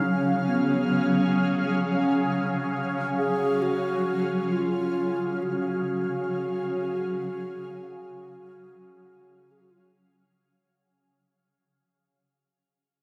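Ambient music in free time, this short excerpt from a longer piece feels peaceful and weightless. A shimmering pad holds sustained chords throughout, its bright, ethereal tone carrying an octave-up shimmer with slow attacks, long releases and a granular texture, coloured by chorus, phaser and its own reverb, and it sits up front. Over it, a mellow, hollow alto flute plays a melody in a straight, airy tone, close-miked and tongued, trailed by a diffuse ambient delay until it stops at 9.9 seconds. The harmony rests on an F#5 chord at the opening. A concert hall reverb of 2.3 seconds bathes the sound, and a long fade-out runs from 1.2 seconds to the close at 10.8 seconds.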